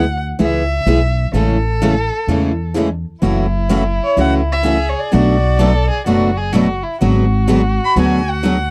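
A swinging 4/4 pulse at 127 BPM drives this charming, playful excerpt of acoustic string swing in the jazz manouche style, moving from A major into F# minor at 3.2 seconds. Up front, a woody pizzicato upright bass anchors the low end, joined by a bright picked steel-string guitar whose finger squeaks come through clearly, while a second, boxier parlour-style guitar sits in the background filling out the accompaniment. A bowed violin carries the melody with expressive vibrato and portamento, its sound set at a slight distance. At 3.2 seconds a second violin enters with a focused, smooth-topped supporting line beneath the lead. The harmony passes from E and Amaj7 through F#m7, Bm7 and G#m7b5, and the dry, close sound recalls a 1970s studio session, with little room ambience.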